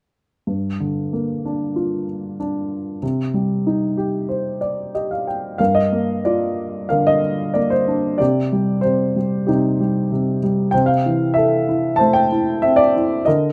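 Classical solo piano in G minor, this lyrical passage, cut from a longer piece, moves at 94 BPM in 4/4 with a rubato feel and a cool, bittersweet mood. A dark baby grand carries it alone from 0.5 to 13.5 seconds, its mellow, worn tone sounding boxy and up front, with audible action noise adding intimacy, and a brief fill at 4.3 seconds leading into a second section. Harmony drifts from Gm7 and Cm to Cmadd9 and Am/C, captured by close, detailed microphones in light reverb.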